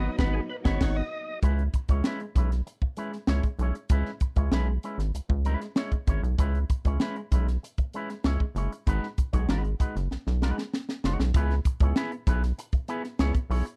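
Driving and sly, this short funk cut opens with a band accent and a brief, thick, lightly overdriven tonewheel organ solo through a fast rotary speaker over shimmering string-machine violins in the background, both gone by 1.4 seconds, while a twangy envelope-filtered electric guitar, a rubbery, up-front square bass and a crisp fusion drum kit with a high-tuned snare and punchy kick carry on through a drum fill at 10.1 seconds in a dry, close 1970s-style studio sound with lossy compression artefacts.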